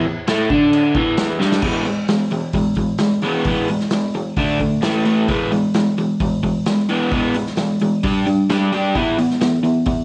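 A bright, crunchy overdriven electric guitar leads this rowdy, raw garage rock clip, cut from a longer piece. The guitar is picked, double-tracked and up front, and it drives a riff in E mixolydian at 131 BPM in a straight 4/4. A vintage acoustic drum kit joins at 0.3 seconds with a punchy kick, a medium-tuned snare, hi-hat, crash and dark cymbals. The kit has a rolled-off top and 12-bit sampler grit, and it sits in a small, pumping room. A drum fill at 1.4 seconds leads into a longer stretch from 1.6 seconds, where the guitar moves between E, D5, A5 and G5. Light reverb and small room ambience give the whole clip a close, scrappy feel.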